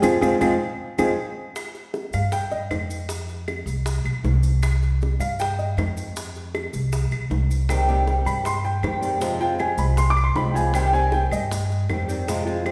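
Tight, high-tuned bongos, woody claves in the background and grainy maracas drive a straight 157 BPM 4/4 pulse in this sultry, danceable Cuban son and guajira excerpt in C harmonic minor, where an up-front pizzicato upright bass with dark steel strings plays throughout, a boxy, ladder-braced old acoustic guitar is fingerpicked at the start and again from 7.7 seconds, and a mellow concert grand piano with deep bass takes an arpeggiated solo after a band accent in the opening 1.6 seconds, the whole ensemble ringing in a church-like hall reverb.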